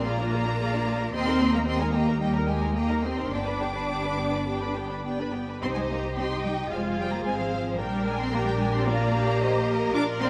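Dramatic and stormy, this quick classical-period movement for string orchestra unfolds with a rubato feel, cut from a longer piece. A violin section carries the melody with a soft attack and expressive vibrato while a second violin line runs smooth and even beneath it, the violas add a focused, rich accompaniment, and the cellos and the woody, up-front double basses anchor the bass through a harmony moving from Bb7 through G and Cm back to Bb7. All five sections play throughout, and a dark production with the wet reverb of a scoring stage surrounds the ensemble.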